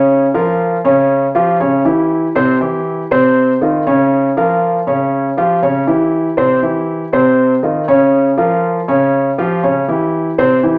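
A grand piano opens the recording and carries it from start to finish, playing a Latin-flavoured passage in a straight four-four feel. Its tone is warm and sits up front, moving between C3 and Db5 in a warm, nostalgic mood. The harmony circles through a repeating pattern of Bbm, C#dim, C and F5, returning to Bbm every few seconds. A moderate large-studio reverb, with a decay of about 1.1 seconds, gives the piano a sense of space. The instrument is tuned to A4 = 435 Hz, and this 10.8-second fragment, cut from a longer piece, ends on the C chord at 10.1 seconds.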